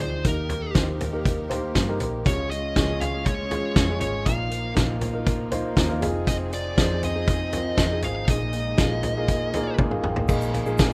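This rough home demo mix has light reverb and a hopeful, uplifting glow, cut from a longer piece of piano-driven pop at 120 BPM in a straight 4/4. A warm grand piano carries the accompaniment through chords of Eb, Db, Bbsus4, Fm7 and Bb7sus4. A fuzz lead guitar sings the melody in a dark, distorted voice, while a loose indie drum kit sits up front with a fat snare and tight kick in a small room. A round, hollow-body short-scale bass, picked and amped, anchors the low end, and a very quiet studio string section adds lush, bowed sustained chords with vibrato. From 2.3 seconds a lo-fi, slightly broken-up electric guitar through a small old amp plays a faint fingered riff. Near the close the piano adds a fill at 9.5 seconds and the drums follow with one at 9.8 seconds, and a grainy egg shaker slips in at 10.3 seconds in the background.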